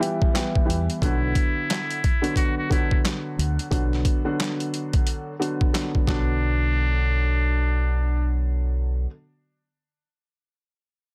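A swung 89 BPM boom-bap groove of compressed, pitched-down sampler drums with a thumpy kick, medium-tuned snare, hi-hat and handclaps sets a reflective, gritty hip hop mood in B minor alongside a woody upright piano with audible action noise and a cassette-tape tint. A round, dark fingered electric bass joins up front at 0.7 s, and a buzzy, breathy muted trumpet enters at 1.0 s with a whispered jazz-style solo line. The drums drop away at 6.3 s, leaving bass, piano and trumpet in a dry, dense, heavily limited mix.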